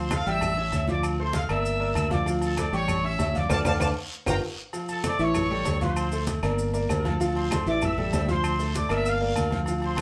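A roomy live-band sound with a moist studio reverb carries this fiery, passionate salsa excerpt in D minor at 194 BPM, where a bright, vibrato-laden trumpet section leads the melody up front over a brilliant, worn grand piano with deep bass and a dark, round fingered electric bass. From 0.1 seconds, ringing agogo bells and timbales, low-tuned thick-skinned congas, very quiet woody claves, a raspy guiro and grainy, saturated maracas fill out the percussion, with the congas, guiro and maracas sitting in the background. The chords cycle through A7, Dm7 and Gm7, and a band accent from 3.5 seconds with a drum fill from 4.0 seconds leads into the repeat of the section at 4.7 seconds.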